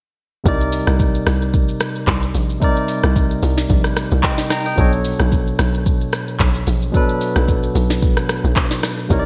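A barky, bright electric piano opens this soulful, hypnotic amapiano excerpt at 0.4 s, its clean, direct tone sitting up front as it carries the accompaniment across a range from B2 to Bb5. A moment later, at 0.5 s, the track drops straight in with a hollow log drum bass, its FM tone layered with noise, giving each fast-attack note a bouncy, percussive character that decays in the low register. An electronic afro-pop drum kit arrives at the same time, placed up front with a deep kick, sharp snare, metallic hi-hats, handclaps, rim clicks and shaker, all wrapped in gated reverb. The groove sits in a swung sixteenth-note feel, and the harmony moves from Cm9 to Bm9 at 4.8 s. The overall mix carries light reverb, digital ambience and a bright, 1980s-style digital production sheen.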